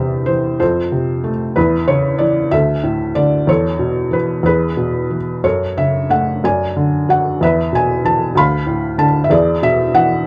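Melancholic and reflective, this lyrical classical excerpt features a solo felt-muted upright piano at a slow 63 BPM in 6/8, played with rubato and spanning D2 to B5 across its 10.3 seconds. The piano sounds soft, mellow and intimate, placed up front with audible action noise and a short sustain, while light reverb and a worn, warbling old-tape quality add pitch drift. Chords drift from C/E through F and C#m/E toward F#m, D/F# and Dm before settling on E at 9.3 seconds.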